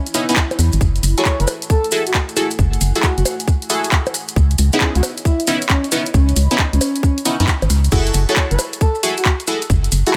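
An overdriven, tight electronic kick sits up front from 0.4 seconds, driving this skippy, moody two-step UK garage excerpt at 135 BPM in F# minor with a heavy 16th-note swing. Beside it, a hollow, organ-like FM bass with a fast, decaying attack holds the low end, while punchy, detuned sawtooth chord stabs with a filter sweep, chorus and dub echo cut through brightly over C#m9 and F#m9 harmonies. A breathy, flute-like synth lead carries the melody with vibrato, tremolo, lush chorus and dub echo. An analog drum machine fills in bongos, handclaps, hi-hat, rim clicks and crash, with grainy maracas sitting in the background. A deep, wave-folded ambient pad with sidechain pumping and its own reverb drifts underneath until 7.9 seconds, when it stops and the track drops into its final section on F#m9, in an otherwise dry mix.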